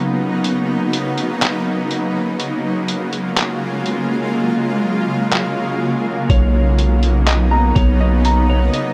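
Atmospheric cloud-rap hip hop at 123 BPM in a half-time 4/4 feel, this dreamy, blissful excerpt floats on a shimmering ambient pad whose sustained chords, with an octave-up sparkle and detuned, granular texture, carry chorus, built-in reverb and sidechain pumping throughout. The harmony moves from Bmaj9 to F#maj9 at 2.4 seconds and back to Bmaj9. A lo-fi sampler-style drum kit of handclaps, hi-hat and kick drum enters at 0.4 seconds, sounding pitched down, muffled and tape-warm, with a thumpy kick placed up front. The opening stretch acts as a break, and its hi-hats drop out from 4.3 seconds. At 6.3 seconds a long, deep 808-style sine bass arrives on B1, decaying after a fast attack, while a dark, clean semi-hollow electric guitar plays fingered arpeggios treated with spring reverb and tape echo. A light reverb gives the mix a gentle sense of space.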